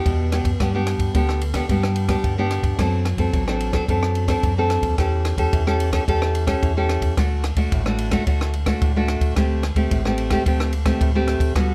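A fingerpicked nylon-string guitar with audible finger squeak sits up front, carrying the festive, playful accompaniment of this samba-choro excerpt through chords moving from G to D7 to A7/E, while a deep, smooth sine sub bass and a compact cocktail drum kit with a punchy kick, dark ride cymbal and rim click fill out a small, moderately reverberant room.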